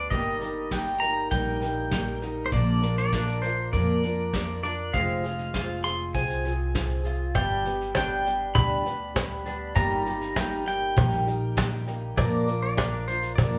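A live-in-one-room recording bathed in a wet studio reverb frames this peaceful, nostalgic acoustic folk passage in Eb major, moving at a straight 100 BPM in 4/4 over chords such as Eb/G, Bb, Fm and G. An up-front, clean electric pedal steel guitar carries the melody with fingerpicks, slide and volume swells, above a dark, shimmering, octave-doubled twelve-string guitar, a round mandolin playing arpeggios in the background, and a woody pizzicato upright bass. A soft brush drum kit with a fat snare and tight kick keeps time throughout, and a snappy, close and dry cajon played with hard hands enters at 7.3 s.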